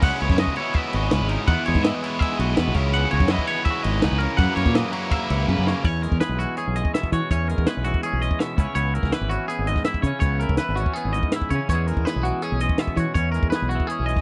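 A compact cocktail drum kit drives a straight 4/4 at 164 BPM, its high-tuned snare, tight kick and dark cymbals sitting up front in a dry, natural sound. This wistful, intricate slice of math rock and midwest emo, cut from a longer piece, sits in E lydian and moves from C#m11 and Emaj9 through F#7 before settling on E6 and C#m7. A growling, overdriven fingered bass carries the low end, direct and amped and pushed forward in the balance. A twelve-string electric guitar picks bright, clean accompaniment, while a twangy, scooped guitar weaves high arpeggios through a lush chorus. A biting, double-tracked overdriven guitar riff plays until a drum fill at 5.5 seconds leads into the second section at 5.8 seconds, where the cleaner guitars carry on. The close, dry 1970s-style studio sound keeps every detail crisp and intimate.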